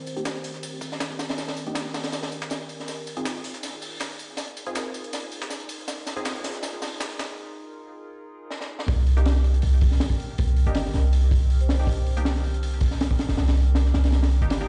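A deep, boomy 808-style bass dominates this dark, atmospheric drum and bass cut, arriving at 8.9 seconds as the drop lands and holding up front to the end. Before that, a build-up runs on two breakbeat kits: a crunchy acoustic kit with a punchy kick, high-tuned snare and rolled-off top plays throughout, while a gritty, pitched-up sampler-style kit with tambourine joins it until 7.3 seconds, with drum fills and a short break leading into the drop. A warbling, nostalgic lo-fi pad sustains detuned chords under everything, moving from Cm7 to Bb7sus4 and back, with filter sweeps on it and on a muted, plucky dub chord stab that pulses with chorus and dub echo. A soft-malleted vibraphone, metallic and ringing with slow motor vibrato, surfaces only in brief, echoing fragments far in the background. The whole piece sits in a stone-walled, bare-room reverb, sounding as though played through a big sound system, with a dull, band-limited top that deepens the murky, swung jungle feel.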